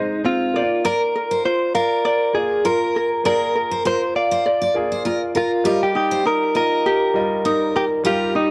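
Set at 100 BPM in 4/4 with a gentle swing on the sixteenths, this heartfelt, easy-going acoustic pop fragment in Eb major is cut from a longer piece and sits slightly below standard pitch. A clean, recorded-direct electric guitar carries the melody up front, its picked tone compressed and scooped, with an analog delay trailing each phrase. Beneath it, a fingerpicked ukulele adds a light, warm accompaniment, while a clear concert grand piano offers a polished, present accompaniment with deep bass, a short sustain and a touch of plate reverb. A bright, full-bodied steel-string acoustic guitar enters at 0.8 seconds with picked arpeggios, finger squeaks audible, and drops out at 8.3 seconds. The harmony moves from Ab to Bb before settling on an Ebadd9 as a new section opens at 5.7 seconds, all captured as an intimate home recording on cassette in a small booth.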